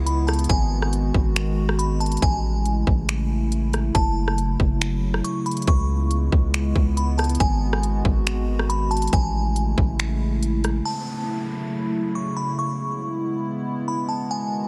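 A half-time 4/4 pulse at 139 BPM drives this hazy, ethereal cloud-rap hip hop excerpt in F# dorian: an up-front trap kit of hard-clipped kick, crisp hats, rim clicks and finger snaps runs until 10.7 seconds beside a deep, sine-toned 808-style bass that holds until 10.8 seconds, while a dark, nasal, detuned analog pad with chorus and sidechain pumping sustains moody chords, a crystalline FM bell carries the melody through chorus, phaser, tremolo, low-pass filtering and digital delay, and a soft electronic downlifter enters at 10.9 seconds in a dry, close mix.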